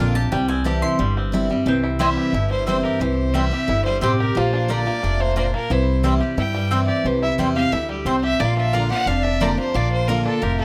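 Close, detailed microphones and light reverb frame this joyful, lively bluegrass passage, cut from a longer piece and moving at 178 BPM in a straight 4/4 in C mixolydian, with the harmony shifting between C and Bb. A mandolin solo opens the passage, its picked, double-string stabs sounding woody. Beneath it, a bright, full-bodied dreadnought guitar with fresh strings plays picked accompaniment. A mellow, twangy banjo adds percussive fingerpicked arpeggios, and a pizzicato upright bass sits up front with a woody, warm acoustic tone. At 1.7 seconds a lap resonator guitar enters with a metallic, nasal slide second line played with fingerpicks, and at 2.0 seconds a single fiddle takes the melody up front, bowed with light vibrato and an airy, intense, somewhat boxy clarity. The mandolin drops out at 10.2 seconds while the rest of the band carries on to the end.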